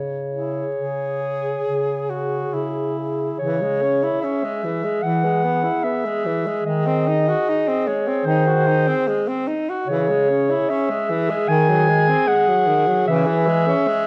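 A rubato 4/4 pulse at 74 BPM carries this serene, tender classical fragment for single-reed quartet in C# minor, where a mellow, smooth-topped clarinet sings the melody up front over a punchy, vintage-toned bass clarinet, while a warm alto saxophone with vibrato adds a second line and a clear tenor saxophone with vibrato accompanies, both entering at 0.3 s, all set in a moderate recital-hall reverb and colored by worn cassette tape with warbly pitch drift.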